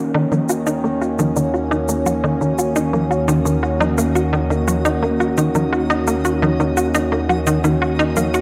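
This mysterious, hypnotic stretch of ambient, sequencer-driven space music opens with a sweeping, resonant pad holding sustained chords, while a tight, punchy sequencer bass riff drives alongside it with a plucky, sawtooth-and-square bite, ring modulation, analog chorus and delay, sitting up front. The pad itself is bright and evolving, its slow attack and filter swell giving way to long releases coloured by chorus. Overdriven electronic toms and shaker join at 0.3 seconds, adding a produced, gritty pulse with delay. Soon after, a twinkling granular texture sparkles in the background with an octave-up, FM-tinged shimmer and its own built-in reverb, and a synth texture fades in across the whole passage. From 0.9 seconds a low analog drone settles underneath, warm, mellow and evolving with pulse-width modulation, a moving notch and chorus. A moderate plate reverb lends the sound space in this cut from a longer piece, which rests on an Ebm7 chord.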